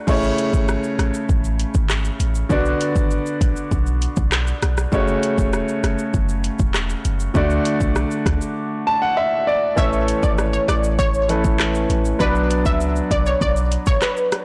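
A brilliant, up-front grand piano carries the chords through this sunny, summery dancehall excerpt, moving through A, Bm, F#m and D and adding a fill at 8.6 seconds. Beneath it sit a boomy, dark 808-style bass and an electronic afro-pop kit with a deep kick, metallic hi-hats, handclaps, rim click, shaker, crash and a softly clipped snare. At 9.8 seconds a round, detuned analog pluck with chorus and delay takes up the melody, and the whole track sits in light digital ambience within a blown-out, overdriven recording.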